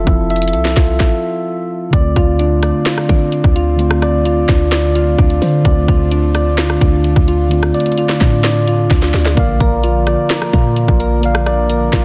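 A dense, heavily limited and dry-sounding half-time trap cut from a longer piece sets an eerie, melancholic mood: a mellow, clean tine electric piano provides accompaniment while up-front, round, detuned synth keys with chorus and tape echo play arpeggios over a deep, boomy sine 808 bass and an electronic kit of hard-clipped kick, sharp snare, rim clicks, finger snaps and bright hi-hats, with a brief stop before a very quiet, breathy pad enters at 1.9 s and a drum fill at 8.9 s.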